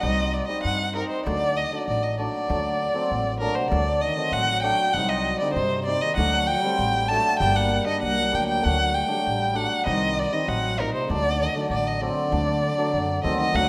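A single bowed violin carries an expressive klezmer melody up front with vibrato, portamento and a soft attack, over shimmering, ringing hammered cimbalom and a thumpy, woody pizzicato upright bass, and at 3.4 seconds a warm, jazz-style trombone joins in the background with a vibrato second line, giving this bittersweet, festive fragment of a longer piece its glow in a reverberant recital hall.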